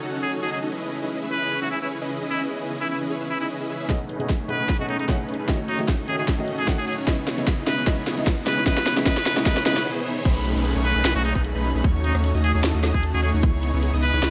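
Future bass with a lush, dreamy mood and a swung half-time feel, cut from a longer piece, opens on a shimmering, very quiet ambient pad, a soft round pluck, a huge detuned supersaw riff pumping under sidechain with delay, and a nasal, brilliant muted trumpet melody with vibrato and tape echo. At 3.9 seconds an intimate grand piano with audible action noise, a thick saturated sub bass, a hard-clipped overdriven kick and a trap kit with sharp snare and bright hats arrive for a build-up with a drum fill, a supersaw filter sweep and quiet risers, leading through a brief break into the drop at 10.3 seconds. There the pluck returns beside an airy, chorused lead in the background, all set in a moderate digital room.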